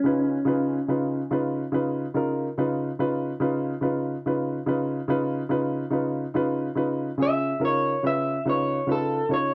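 Blues in 12/8 at 48 BPM with a straight feel, swaggering and gritty, sitting on a C#7 chord in this short excerpt from a longer piece. An electric guitar through a small old amp carries the melody from 0.0 to 9.5 seconds, its picked tone twangy and slightly broken-up, while a warm upright piano accompanies throughout with a woody, polished sound and short sustain. Both parts sit up front in a dry, close 1970s-style studio recording with little reverb.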